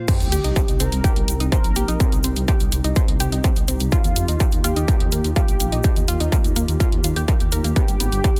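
Cut from a longer melodic techno track, this cinematic, dramatic drop rides a straight 4/4 pulse from a distorted, overdriven electronic kick placed up front. An overdriven techno kit adds sidechain-pumped hi-hat and crash, and a grainy egg shaker sits close and dry in the background. Underneath, a detuned sawtooth bass rumbles deep and beating with its own sidechain pumping, while a very quiet electronic sub drop marks the impact from 0.1 to 2.0 seconds. A moody analog pad of square and saw waves holds slow-attack chords through chorus, moving from Cm to Ebadd9 and then G at 7.8 seconds. Above it, a thick, bold unison lead carries the melody with vibrato, ring modulation and tape echo, and a warbling, lo-fi pluck spins arpeggios through chorus and dub echo. The mix is dense and heavily limited with little reverb, and the sidechain pumping on the pad, lead, pluck and bass gives the drop its breathing motion.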